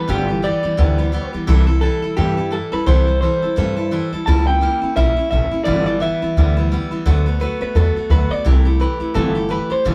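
Swung eighths drive this rollicking, upbeat rockabilly fragment, where a twangy, slightly broken-up, lo-fi electric guitar through a small old amp carries the melody over a picked steel-string dreadnought's up-front accompaniment and a thumpy, woody, gut-strung upright bass plucked prominently at the bottom, the trio heard playing live together in one room with moderate reverb as sixth chords move through a brief diminished passing chord.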